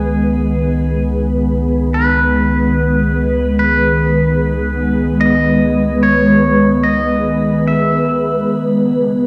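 A glassy, ethereal FM pad with chorus, phaser and its own reverb holds sustained chords over a deep, round analog bass on C#2, while a twangy, fingerpicked electric pedal steel sings an up-front slide melody with volume swells and analog delay until 8.2 s in this spacious, reflective ambient fragment at 73 BPM, all bathed in a wet spring reverb on a home cassette recording as the harmony moves from C#7sus2 to C#7(no3) at 8.5 s.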